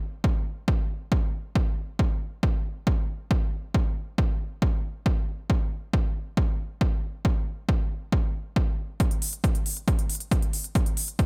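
An overdriven, punchy electronic kick drum sits up front from 0.2 seconds, driving this uplifting, euphoric trance excerpt at 137 BPM in a straight 4/4 with little reverb. At 9.0 seconds, crisp, overdriven electronic hi-hats join for a build-up that runs to the cut at 11.3 seconds. Both layered drum parts carry the sound of being re-recorded in a large room.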